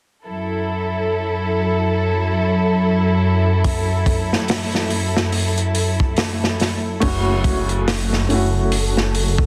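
Swung sixteenths at 71 BPM set a brooding, cinematic trip hop pulse as a rich, bowed string section holds an F#m7 chord from 0.3 s, a crunchy, saturated breakbeat kit with dark cymbals joins at 3.6 s, and from 7.0 s a woody upright piano with tremolo, 12-bit sampler grit and tape echo arrives over a deep, rumbling detuned saw bass, with a breathy, wind-like noise layer drifting in the background, all under a heavily compressed radio sound.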